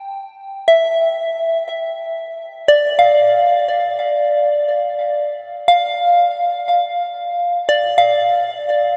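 A huge, wet ambient reverb with a long 7.6-second tail surrounds this serene, spacious ambient fragment in D minor, drifting at 60 BPM in a straight 4/4. A soft synth bell plays alone and up front throughout, its pure FM tone striking quickly and decaying into a long release, colored by chorus, phaser and tape echo as it moves between D5 and F5. The harmony rests on Dmadd9 before settling onto plain D minor at 5.7 seconds, and the piece is cut from a longer work.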